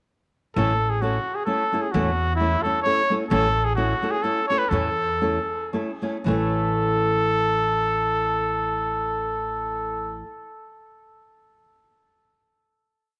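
Mexican folk in the mariachi tradition, this short, complete piece carries a proud, festive mood in 3/4 time, moving between 111 and 131 BPM with a lightly swung feel in A major. A clear trumpet leads up front as the soloist, playing a classical-style, motif-based melody built from call phrases, its smooth top edged with tape echo. Beneath it, a bright nylon-string guitar supplies fingerpicked, classical accompaniment along with chop strumming on open chord shapes, while a woody upright bass plucks root and fifth on the main beats. All three parts enter together at 0.6 seconds on an A chord, and the tempo slows from 3.3 to 6.3 seconds before the piece settles onto a final chord that runs from 6.3 to 9.4 seconds. A moderate echo chamber reverb and studio ambience give the small group a sense of space.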